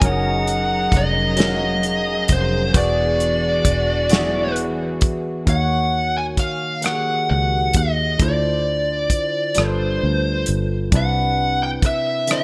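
Slow, sultry R&B in a late-night six-eight at 44 BPM, cut from a longer piece, where a dark, compressed fuzz lead guitar carries the melody up front over a barky, lightly overdriven tine electric piano with subtle chorus and a round, foam-muted fingered electric bass. A damped 70s drum kit with a tight kick, medium-tuned snare, rim click and hi-hat sits dry and forward with gated reverb, while a lush bowed string section holds smooth sustained chords in the background until 5.4 seconds. The bright 1980s-style digital production, bathed in moderate plate reverb, moves through rich chords from Gb69 and E9 into a Ebm7, Dm7, G7 turn that lands on Cmaj9.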